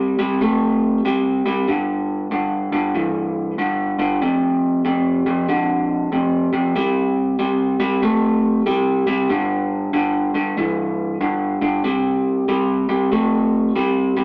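An electric guitar through a small old amp plays alone from the start, its slightly broken-up, lo-fi tone sitting up front with spring reverb, picked in a low register across a gritty, rollicking blues in C major at 94 BPM with a swung feel. The chords move through C5, G5 and F5 before a new section arrives at 11.8 seconds back on C5. The rough rehearsal-room recording carries tube saturation and a moderate stone room reverb, and this short cut from a longer piece ends at 14.2 seconds.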